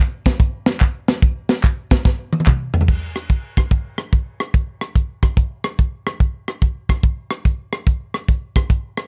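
Jubilant and reverent, this gospel excerpt swings at 144 BPM in 4/4 with a close, acoustic layer of tambourine, tube shaker and group handclaps running from 0.2 to 2.8 seconds beneath a dry, up-front tight funk drum kit of crash cymbal, hi-hat, tight kick, rim click, high-tuned snare and toms that plays from 0.3 to 9.0 seconds, moves through a drum fill from 2.1 to 2.9 seconds into the next section, and sits in a natural, barely reverberant room with the grain of cassette tape.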